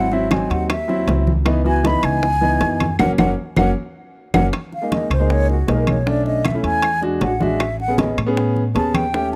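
A straight 4/4 Afro-Cuban jazz groove, sunny and sophisticated, comes from soft-handed, low-tuned congas, hard-handed bongos and woody claves in the background, joined by ringing metal-shell timbales, while a thumpy, gut-strung pizzicato upright bass and a clear, long-sustaining grand piano sit up front; a band accent arrives at 3.0 seconds and a drum fill follows at 3.4 seconds, and the breathy, expressive flute with vibrato carries the melody before taking a solo from 4.5 seconds in this dry, close 1970s-style studio recording cut from a longer piece.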